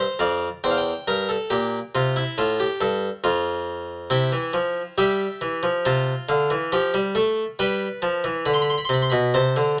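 A lone harpsichord opens at once, its plucked, nasal tone bright and set up front, launching a baroque-style three-part fugue in the classical tradition. The mood is driving yet solemn, moving at 69 BPM in a straight 4/4, with the instrument tuned to A4 = 439 Hz. Its Italian-style sound is thin and bright, ranging from E2 up to C6 as the three voices unfold across the keyboard. The harmony passes from a rootless G7 through C7 over E, F, C, and Dm7 over C before arriving on G7 at 7.6 seconds. A light reverb gives the instrument a touch of space, and the 9.8-second passage is cut from a longer piece.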